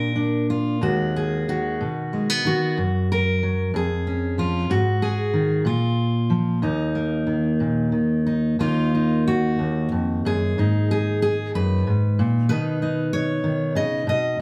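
Intimate and reflective, this short folk passage cut from a longer piece features a solo fingerpicked steel-string dreadnought guitar, full-bodied and up front with audible finger squeak, drifting in rubato 6/8 around 62 BPM in Eb minor through a small room's light reverb, moving into a second section at 8.6 s where Ebmadd9, Abm and Badd9 chords colour the harmony.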